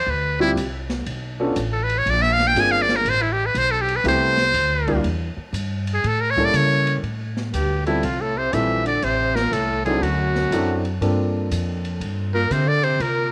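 Small-group jazz in a swing and bop vein, this cool, smoky excerpt from a longer piece moves at a medium swung pace in minor. A trumpet with a metal mute carries the melody up front, its buzzy, thin tone breathy and close-miked with vibrato, taking a solo through the first 7.0 seconds. A woody, thumpy pizzicato upright bass sits close underneath, while a baby grand piano offers present accompaniment and an acoustic drum kit adds dark cymbals, a medium-tuned snare and a boomy kick across hi-hat, ride, snare and kick. At 7.5 seconds a warm baritone saxophone enters on a second line, distant and roomy with scooped notes. The piano, drums and saxophone carry a cassette-tape colour, and the whole home recording has light reverb and studio ambience.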